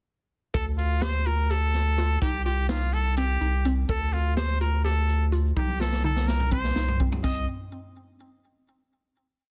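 At 0.5 seconds a brooding, driving progressive instrumental starts at once, a short whole piece in 7/8 at 251 BPM counted in eighths, with a straight feel in C dorian. A clear trumpet carries a forceful, jazz-style solo melody built from short motifs, with light vibrato, scooped notes and a punchy, vintage edge. Beneath it, a mallet-like FM synth pluck repeats a woody, nasal arpeggio ostinato with a noise layer and fast, short-decaying attacks, softened by chorus and delay. A deep, saturated sine sub bass sits up front, thick and sustained and locked to the boomy kick of an acoustic big-band drum kit, whose medium-tuned snare, hi-hat, crash and toms hold a swinging 7/8 groove. The harmony alternates between Dm and Cm until a drum fill from 5.6 seconds leads to a final chord at 7.2 seconds, all set in a small room ambience with a dense, heavily limited modern master.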